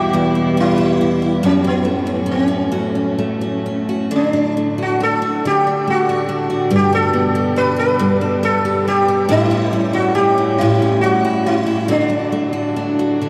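A slow, rubato Celtic slow air in 3/4 at about 69 BPM, this wistful, pastoral excerpt in D major drifts through Em, F#m, D, G and A7 before coming to rest on D at 11.9 seconds. Up front, a sitar carries the melody in its midrange, its plectrum-plucked tone buzzing and shimmering with sympathetic strings. Beside it, a picked steel-string acoustic guitar supplies warm accompaniment spanning low to middle registers, with a full, auditorium-sized body. Further back, a chamber string section holds bowed, sustained chords with a reedy, period-style gut-string richness. All three parts play together from the start to 13.3 seconds, bathed in a huge, wet ambient reverb that places the music in a vast, echoing space.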